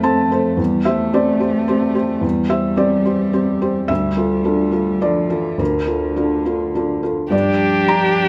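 Reflective and fragile, this rubato neoclassical piece in 3/4 sets a soft, felt-muted upright piano up front alongside a smooth, bowed cello second line in a moderate recital hall reverb, with a clear viola and an expressive violin melody, graced by portamento, both entering at 7.3 s as the harmony moves from F through Dmadd9 to Gm7.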